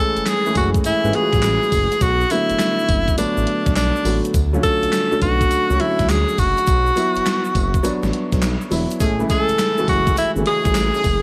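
This short cut from a longer piece opens on a lightly reverberant sound, with a bright, punchy tenor saxophone up front carrying the melody in a forceful jazz style, its scooped notes and vibrato riding a smooth top. It's upbeat, flirty R&B in the new jack swing mould, moving at 103 BPM in 4/4 with a swung sixteenth-note feel in A major. A worn, vintage grand piano supplies the accompaniment from the first moment, and at 0.2 seconds a mellow, detuned synth bass with a sawtooth and square-wave edge joins in alongside a gated 80s digital drum machine. The drum kit has a sampler-style character, with a thumpy kick, a gated reverb snare re-recorded in a large room, handclaps, hi-hat and tambourine, while a grainy egg shaker sits in the background. The chords move from Amaj7 through Bm7, Dmaj7 and Bsus4 before returning to Amaj7 at 9.0 seconds, where a tight, clear horn section adds jazz-style stabs in octave doubling from behind the mix.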